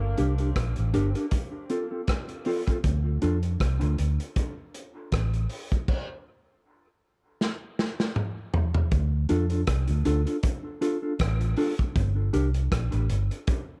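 A round, punchy, foam-muted fingered electric bass sits up front in this hypnotic, meditative dub reggae excerpt at 79 BPM in D minor, moving through Gm, F and Dm with a lightly swung 16th-note feel. A gritty, saturated breakbeat kit with dark cymbals, a tight kick, rim clicks and toms plays alongside, while a clean, mellow electric guitar colored by tremolo, a high-pass filter and dub echo adds brief accompaniment. The echo-heavy studio reverb frames a stop at 5.9 s, with a drum fill from 7.4 s leading into a closing section where the guitar returns at 9.3 s.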